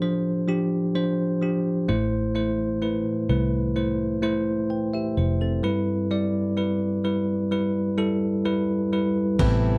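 Emotional and melancholic, this slow pop ballad at 64 BPM opens on a bright, bell-like tine electric piano sitting up front over a Dm7, Am and Em/G progression, with a dark, round, foam-muted electric bass joining at 1.9 seconds. Near the close of the short cut, at 9.4 seconds, a warm fingerpicked parlour acoustic guitar with fresh strings and a hint of finger squeak enters alongside a brief burst from an electronic deep house kit, its punchy kick and dark hats captured in a small room. The whole has the dry, close feel of a 1970s studio, touched with light reverb.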